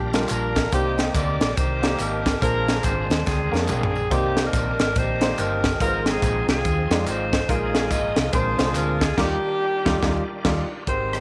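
A clear, up-front saxophone section opens this jubilant, soulful stretch of uptempo gospel, singing the melody with smooth vibrato over a quiet, bright tonewheel organ that holds sustained chords through a slow rotary speaker and a touch of key click. A dark, round hollow-body electric bass sits beneath them from the start. A concert grand piano with an open, deep low end joins almost at once for accompaniment, alongside a crisp acoustic drum kit with a high-tuned snare and a punchy kick pumping in a small room. Tambourine and group handclaps, distant and in the background, add a lift until 9.1 seconds. A drum fill arrives around 3.3 seconds, and the swung groove moves through rich ninth and suspended chords before the full band hits an accent from 9.2 seconds, landing on a major-ninth chord. A moderate spring reverb and small-room ambience give the excerpt a lively, close feel.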